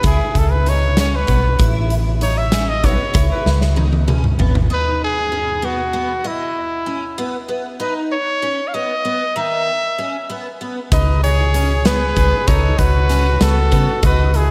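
In a brisk, straight 5/8 at 193 BPM, this brooding, intricate progressive instrumental excerpt opens with a punchy, forceful trumpet soloing over shimmering, octave-doubled twelve-string guitar arpeggios, a dark, round hollow-body bass and a huge arena drum kit whose fill from 3.5 seconds leads into a sparser stretch, before bass and drums return at 10.9 seconds alongside a vibrato-laden flugelhorn second line over chords moving from C#m7 through Badd9 to B9/C#, all bathed in light reverb with slapback echo on the horns and guitar and tape echo on the trumpet and guitar.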